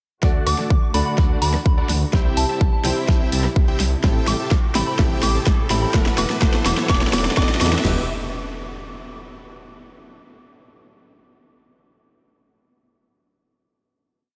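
A grand piano, dark symphonic strings, a dense supersaw, a detuned saw bass and a big-room dance drum kit all arrive together at 0.2 seconds, launching this short, euphoric festival progressive house piece straight into a build. The intimate piano holds drop-voiced chords with syncopated pushes, its action noise audible beneath sidechain pumping and digital delay, while the distant, woody strings sustain a very quiet, lush pad. The thick, airy supersaw plays dotted-rhythm chords in open voicing from the background, pumping under a low-pass filter sweep that runs through the build, and the menacing, beating bass drives eighth notes underneath. Two layers of overdriven drums sit up front, one with a punchy four-on-the-floor kick, huge snare, floor tom and crash carrying a fill through the build, the other adding programmed hats, rim clicks and backbeat snare. A pure, gentle FM bell with chorus and delay sings short answering phrases above, a background riser climbs from 3.6 seconds, and at 7.8 seconds an impact lands on a final E minor chord that rings out to 9.8 seconds.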